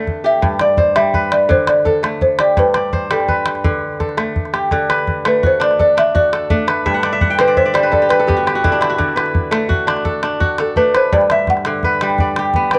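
This is West African traditional music for strings and xylophone, a flowing, warm excerpt cut from a longer piece, moving at 112 BPM counted in dotted quarters in a straight 12/8 and set in D mixolydian. The kora sits up front, its bright, crisp, ringing fingerpicked arpeggios spanning a broad register while a tape echo trails each note. The balafon carries the melody with a woody, round tone from soft rubber mallets, dry at its core yet touched by its own tape echo, and from 4.7 seconds it takes a solo that runs to the end. A small acoustic calabash adds compressed, saturated percussion at a lower level, and the kora plays a fill between 6.9 and 9.0 seconds. The music is heard in small room ambience with moderate echo chamber reverb, and the harmony moves between G and D throughout.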